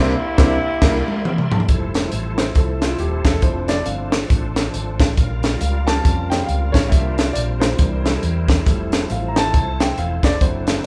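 Recorded live in one lightly reverberant room, this jubilant, reverent uptempo gospel passage at 138 BPM, swung in F major, opens on a band accent in which a mellow, distant saxophone section briefly carries the melody over a drum fill; from 1.7 s a present, polished baby grand piano with long sustain takes a solo above a reedy tonewheel organ with key click, chorus vibrato and slow rotary speaker, a dark, round hollow-body electric bass, a crisp, up-front acoustic drum kit with bright cymbals and a high-tuned snare, and a very quiet French horn section holding smooth sustained chords.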